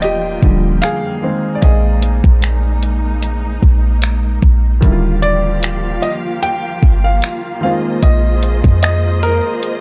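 A gated 80s digital drum machine sets a lightly swung, up-front groove of finger snaps, hi-hat and a thumpy kick, anchored by a deep, boomy 808-style bass with a fast attack and a mellow, decaying sine tone. This is a smooth, romantic slice of contemporary R&B, with a clear grand piano playing a solo over the first 4.8 seconds of its accompaniment, while a veiled, con sordino string section holds lush bowed chords with vibrato and a sidechain pumping effect. At 5.2 seconds a clear concert grand piano enters with an intimate melody, its audible action noise adding to the dry, dark production.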